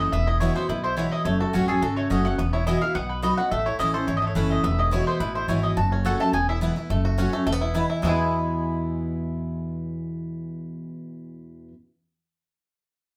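A driving, virtuosic bluegrass band comes in together at once: a woody, double-strung mandolin carries the melody over a bright, up-front dreadnought guitar, a twangy, percussive banjo picking arpeggios with fingerpicks, and a thumpy pizzicato upright bass. A second picked mandolin adds background stabs from 0.4 seconds, as chords centred on Eadd9 and F#m move briefly through B and A. The live, one-room sound sits in a wet studio reverb, and this excerpt is cut from a longer piece.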